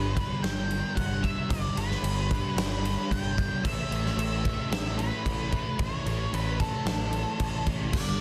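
A straight 4/4 pulse at 112 BPM drives this blissful, dreamy shoegaze and dream pop excerpt, with a huge, punchy arena drum kit entering at 0.2 seconds, its fat snare and bright cymbals up front in a big room. A thick, double-tracked fuzz guitar riff with ensemble chorus and a growly, direct picked electric bass hold the low end, while an octave-fuzz lead guitar with digital delay carries the melody above. The harmony moves from G to Asus2 at 3.6 seconds, all within a small room ambience and a dense, heavily limited modern master.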